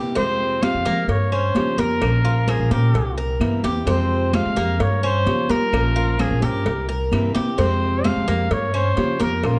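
Nostalgic and sultry, this short cut from a longer piece of Cuban son and guajira moves at 129 BPM in a straight 4/4, set in F harmonic minor. Up front, a breathy trumpet carries the melody with a soft attack, vibrato and a whispered, intimate vintage tone, entering at 0.2 seconds. A pizzicato upright bass, woody and prominent, anchors the low end, while a picked Cuban tres adds metallic, double-stringed arpeggios and a fingerpicked nylon-string guitar fills in bright, full-bodied classical accompaniment. In the background, high-tuned congas played with soft hands and a round, low-tuned cowbell sit close and dry, joined at 0.6 seconds by very quiet, band-limited claves. The harmony cycles through Fmadd9, Gm7b5, Bbmadd9 and C7, all wrapped in a moderate large studio reverb and a dark production.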